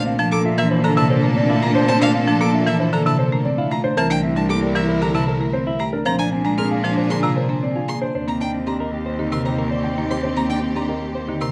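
Propulsive and hypnotic, this short classical passage in a minimalist pattern style moves at 115 BPM in a straight 4/4, cut from a longer piece. It opens in Bb lydian over chords of Bbmaj9, C9 and Bb7, then shifts to Eb major at 8.1 seconds, settling on an Eb6 chord. A woody, bright marimba with medium hard mallets drives the accompaniment in the low-middle register, while a clean, compressed electric guitar with a picked tone and a violin with vibrato and portamento spin arpeggios above, the violin reaching high with a smooth top. A dark, worn grand piano carries the melody with audible action noise that lends it an intimate feel, and an airy alto flute with a wooden head traces a second line in the background. Underneath, a clear bowed cello holds the bass and a rich, distant string section sustains chords, all set in a moderate large studio reverb.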